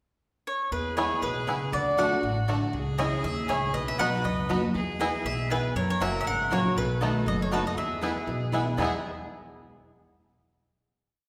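A bright, woody mandolin opens this short, rustic and lively bluegrass piece in E major at 238 BPM, playing a swung, motif-based melody from 0.5 s. At 0.7 s a full-bodied dreadnought guitar brings alternating bass, strums and runs, a dark, thumpy gut-string upright bass walks up between two-beat roots and fifths, and a clear, distant fiddle draws a long bowed guide-tone line with light vibrato. From 1.0 s a twangy banjo in the background adds three-finger rolls and off-beat vamping while a second mandolin chops the off-beats, all ringing in a reverberant recital hall up to a final chord.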